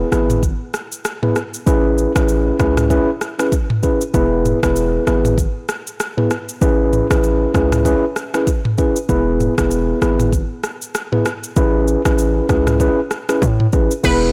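A blown-out, overdriven recording with light reverb carries this romantic, joyful afrobeats cut from a longer piece, moving at 97 BPM in 4/4 with a 16th-note swing and alternating between E and Amaj7. A mellow, clean tine electric piano sits up front, over a punchy, heavy 808-style bass with a noise layer and an electronic afro-pop kit of deep kick, rim click, shaker, toms and crash, its snare softly clipped. At 14.0 s a round, warbling vintage analog pluck with chorus and a bright filter sweep sounds a brief melodic note as the passage closes.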